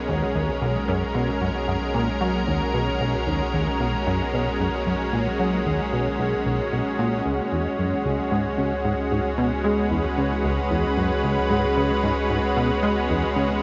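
Bathed in a huge, wet reverb with a 7.7-second tail, this mysterious, expansive piece of sequencer-driven ambient space music at 113 BPM sets a thick, detuned, bright unison pad sustaining chords with chorus up front over a deep, round sine sub bass, while a punchy, funky analog bass riff with ring modulation, a filter pluck, ensemble chorus and tape echo drives the excerpt from Bmaj7 to C#m7 at 7.3 seconds.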